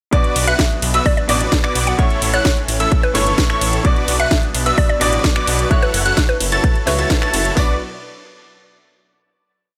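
The punchy four-on-the-floor kick and open hats of a tape-warm house drum kit drive this powerful, anthemic festival progressive house drop in B minor at 129 BPM, joined by a second overdriven kit with a cracking snare backbeat, metallic programmed hats, ride, and finger snaps. A huge, thick supersaw riff in dotted-rhythm chords pumps against the kick with digital delay, while a detuned saw bass enters at 0.4 seconds with saturated, chorused off-beat notes. High above, a catchy plucky unison lead with cassette tape colour plays arpeggios in the background, doubling the chords an octave higher, and a woody, warbling FM mallet pluck adds short answering phrases from 0.5 seconds. A clear, intimate baby grand piano with audible action noise supports the harmony with held chords and syncopated pushes, and a very quiet lush pad with phaser swells in with a slow attack on sustained chords. The progression moves through Bm, A, Bm and F#m7, with a band accent at 7.1 seconds before a final Bm chord rings out from 7.6 seconds in light reverb.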